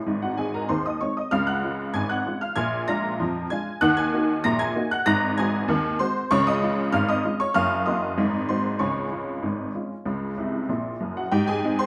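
Ragtime piano in Db major, this lively, cheerful piece moves at 96 BPM in a straight 2/4 feel and is cut from a longer work. A honky-tonk upright piano plays solo throughout, its detuned, jangly voice sitting up front and spanning from Gb1 up to Bb6. The instrument has a vintage, open character with a bright edge, framed by moderate studio reverb. The harmony circles through Db, Bb7, Ebm, Ab7 and Gb before returning home, giving the passage a sunny, familiar ragtime motion. Near the close, a piano fill arrives at 10.4 seconds and leads into an Ab chord at 11.3 seconds as the section ends.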